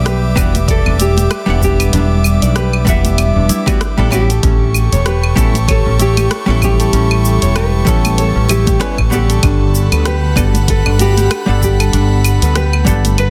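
Sunset chillout at 96 BPM with a swung 16th feel, relaxed and wistful, where a full-bodied, fingerpicked nylon-string guitar carries the melody over dark, clean hollow-body jazz guitar accompaniment, a breathy chorused pad, a ringing Celtic harp arpeggiating in the background and a round fretless bass sitting up front, while a produced deep house kit of claves, hi-hat, rim click and shaker, a punchy electronic kick and soft-handed congas keep time as the chords move from Em7 to A7 to Gmaj9, with delay on the guitars and harp and a dense, heavily limited master.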